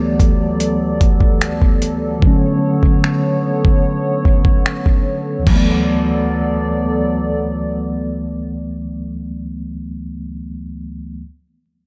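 Just after the keys enter, a dusty, sampler-style soul kit sets a straight, unhurried groove of thumpy kick, hi-hat, finger snaps and crash, its overdriven, compressed grit sitting up front until it drops out at 5.7 seconds. Beneath it, this tender, romantic contemporary R&B fragment rests on a mellow tine electric piano, clean and close as if heard through its own built-in speakers, while a hollow, flute-like pad with a nasal, detuned edge and chorus holds soft-attack chords moving from D6 to Bm9 and back until 9.5 seconds. The dry hardware recording keeps the sound intimate, with the piano carrying on alone to the end.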